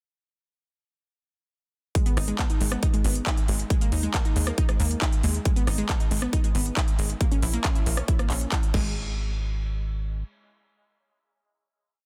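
A dense, heavily limited modern master with little reverb gives this short uplifting trance piece a close, compact sound and a bittersweet, emotional mood. The drop arrives at 2.0 seconds, with a punchy, up-front electronic kick holding a four-on-the-floor pulse beneath a layered, tape-warm big-room kit of crisp programmed hats, rim clicks, handclaps, a backbeat and a crash. A tight, driving sequencer bass built from sawtooth and square waves plays off-beat notes with a filter-plucked, decaying edge and sidechain pumping. Over it, a lush, detuned unison pluck runs a 16-step arpeggiated sequence with a noise layer, short decay, pumping and dub echo, moving through G#m, D#sus4 and A#dim chords. The drop gives way at 9.0 seconds to a final hit, with the bass ringing on until 10.2 seconds.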